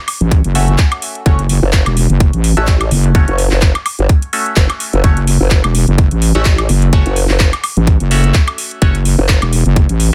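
Over a swung 16th-note groove at 127 BPM in 4/4, this aggressive, bouncy bass house cut sits on a single F# minor chord, taken from a longer piece. An overdriven electronic kick sits tight and up front, while a house kit adds handclaps, metallic hats and woodblock with a tape-warm tint. A heavy, resonant wobble bass built from square and sine waves holds the low end from the start, saturated through tube distortion, thickened with chorus and pumped by the sidechain. At 1.6 seconds a second wobble bass joins, a pulse-wave voice shaped by a formant filter, with overdrive, chorus and the same pumping. Above them, a nasal, band-passed sawtooth chord stab with ring modulation decays through phaser, dub echo and sidechain pumping until 9.0 seconds. The dense, heavily limited master and digital ambience keep the mix loud and compact.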